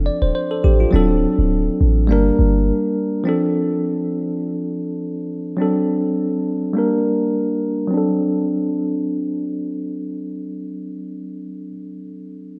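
Afrobeats with a smooth, sultry feel and a lightly swung groove, where a bell-like tine electric piano, bright and up front with a low-pass filter sweep through the first 7.9 seconds, rides Dm7, D7 and Gm chords across the whole cut from a longer piece, while a clean, boomy 808-style bass with a dark, decaying sine tone sounds only until 2.7 seconds, all set in a lush hall reverb within a rough home demo mix.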